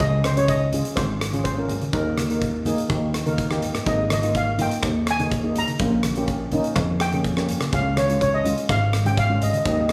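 Calypso with a bouncy, carefree mood, cut from a longer piece, where a shimmering lead steel pan played with soft rubber sticks carries an airy melody under plate reverb while a second, darker and smoother double-seconds pan supplies mellow accompaniment beneath it. A plucky analog bass with a punchy, funky filter pluck anchors the harmony alongside a huge arena drum kit of hi-hat, rim click and kick, which plays a short fill from 3.4 to 3.9 seconds. Bright, low-tuned congas struck with soft hands join at 0.2 seconds, sitting in the background of a moderate studio reverb.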